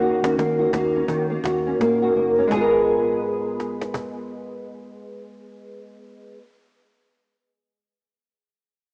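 Indie and bedroom pop at 84 BPM in G# dorian with a 16th-note swing, this wistful, mellow fragment sets a dark, thumb-plucked flamenco guitar up front with finger squeak, chorus, vibrato and cassette grain over D#m7 moving to G#m69 at 2.5 seconds, while a slightly broken-up picked electric guitar through a small old amp carries a quiet melody with chorus and tape echo, a foam-muted vintage bass adds round low notes, and a snappy, close and dry cajon with snares plays until 4.1 seconds, all set in a lush hall reverb with a homemade small-speaker cassette sound.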